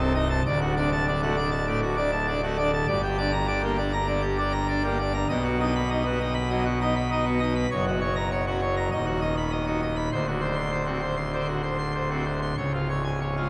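Drenched in a cathedral reverb that rings for seven seconds, this majestic, jubilant organ toccata in G minor at 99 BPM features a solo pipe organ up front on full organ with brilliant mixtures, baroque voicing and audible chiff, spanning C1 to C6 as its harmony moves from D through Gm, B, F#, B/D# and D7 to C# in a 13.5-second fragment cut from a longer piece.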